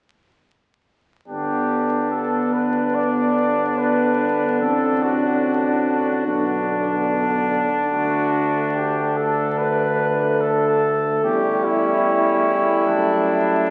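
This is a classical brass quintet piece, noble and triumphant in mood, in a steady four, cut from a longer work. All five instruments enter together at 1.3 seconds and play through to 13.7 seconds. The cornet carries the melody with a warm, smooth top, sitting up front, while a clear trumpet with light vibrato adds a second line from farther back in the hall. Beneath them, a mellow French horn and a vintage-toned euphonium, both with gentle vibrato, fill in the accompaniment, and a soft-attacked tuba anchors the bass from a roomy distance. The harmony moves from G through D7/A and Bm to D, then A7/E and D/F#. The sound is that of a very old 78 rpm record, with vinyl crackle over a reverberant recital hall.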